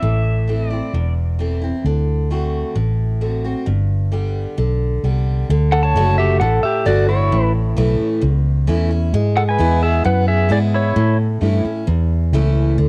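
A twangy, bright pedal steel guitar with fingerpicked slide lines and volume swells sings the melody up front at 0.0 s and again from 5.7 s in this heartfelt, nostalgic honky-tonk and classic country excerpt at 132 BPM, carried by a full-bodied picked dreadnought acoustic guitar with fresh strings, finger squeak and cassette tape colour, and a dark, round, foam-muted electric bass, all with the studio ambience of a cassette home recording as the harmony settles into D major at 5.5 s.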